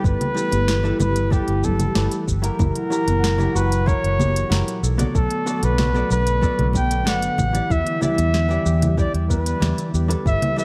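A dark, lightly reverberant sunset chillout excerpt at 94 BPM in a sunny, smooth mood, where an up-front flugelhorn with delay sings the melody over hollow-body jazz guitar, a breathy chorused pad, a ringing thumb-plucked harp, a round foam-muted electric bass, an overdriven soft electronic kick, a crisp overdriven R&B kit and saturated congas in the background, moving through G69, F#7b9, Bm7 and Em7.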